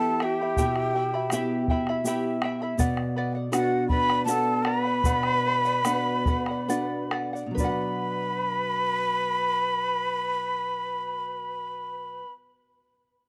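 A breathy large quena leads this melancholic, wistful Andean folk excerpt in B minor. Its wooden, straight tone sits up front with a crisp, chiffy attack, while a distant shakuhachi carries a second line beneath it with airy vibrato. A fingerpicked charango, shimmering on its double strings with some octave-doubled courses, and a small, forward nylon-string guitar fill out the accompaniment in a 3/4 of 66-82 BPM. A round bombo anchors the pulse, joined at 0.6 seconds by a grainy, bright tube shaker, and both percussion parts drop away at 8.0 seconds. The tempo eases back from 2.8 seconds to the close of the opening section as the harmony moves from E minor to B minor, and a second section begins at 7.6 seconds. The sound is dry and intimate, a 1970s-style studio take with only a small room's reverb.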